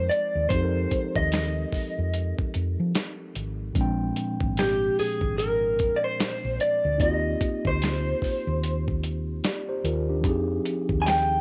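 A slightly broken-up electric guitar through a small old amp leads this smooth, late-night neo-soul and R&B excerpt from the first moment, carrying the melody up front with a picked, lo-fi, compressed tone dressed in lush chorus and slapback echo. Beneath it, a mellow, clean tine electric piano supplies the accompaniment, while a fingered hollow-body short-scale electric bass adds a dark, round and punchy low end. A dusty sampler-style drum kit comes in at 0.1 seconds with a thumpy kick, a medium-tuned snare and hi-hat; its gritty, overdriven sound was re-recorded in a small room and sits up front. At 74 BPM in 4/4 with a swung sixteenth-note feel, the harmony in F dorian moves from Fm9 to Bb13 at 3.7 seconds and to Eb69 at 7.0 seconds before returning to Fm9. Light reverb and digital ambience lend the mix a soft sense of space.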